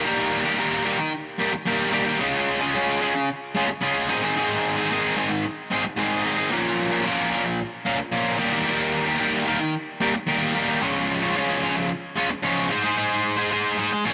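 A rough, saturated rehearsal-room sound with a small room's moderate reverb and dull top end frames this brooding, gritty rock excerpt, where a lone distorted electric guitar, double-tracked, picked and up front with analog delay, plays alone across its 14.1 seconds through a cycle of Eb, Db, Ab and Bbm chords.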